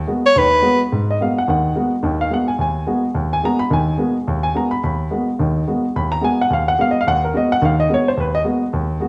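A worn baby grand piano opens this searching, intense swing-jazz fragment at 215 BPM in G# dorian, sitting on a G#m9 chord with audible action noise and short sustain, up front and intimate. At 0.3 s a close-miked soprano saxophone briefly sings a clear, subtoned phrase with vibrato until 0.8 s, after which the piano carries on to 9.1 s. All of it sits in the wet reverb of a large studio.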